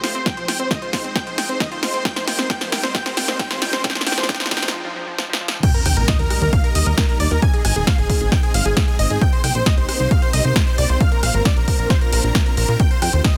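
Uplifting trance with a soaring mood, where a huge, euphoric supersaw lead carries the melody over a mellow, very quiet plucky unison second line, a lush supersaw pad and a background unison pluck arpeggiating until 5.6 seconds, while a punchy, tape-warm analog drum machine and electronic kick drive a build-up with drum fills and a quiet riser into a drop at 5.6 seconds, shortly after which a funky, tube-saturated plucky analog bass joins at 5.9 seconds under a dense, heavily limited master.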